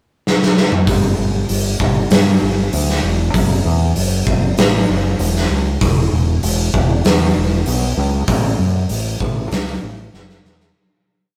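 Shoegaze-leaning dream-pop rock at 97 BPM in a blissful, dreamy mood, where a big, bright-roomed acoustic drum kit with punchy kick and medium-tuned snare fills in from 0.3 seconds, a growling, overdriven fingered electric bass drives eighth notes up front from 0.9 seconds, and the rough rehearsal-room sound with light reverb and saturation fades out from 8.3 seconds.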